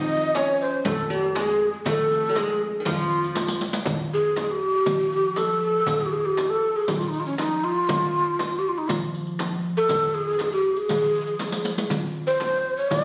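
Passionate and stately, this Arabic maqam ensemble excerpt in F maqam saba moves at 119 BPM, with a breathy, unsteady low ney carrying the melody up front over a woody pizzicato upright bass, while a bright plectrum-plucked oud plays a second line until 3.6 seconds. A close, dry riq with bright jingles joins them, and a crisp metal-shell darbuka and a soft-handed frame drum sit in the background. The percussion adds drum fills at 3.4 and 11.4 seconds within a moderate stage reverb captured on a phone in the room.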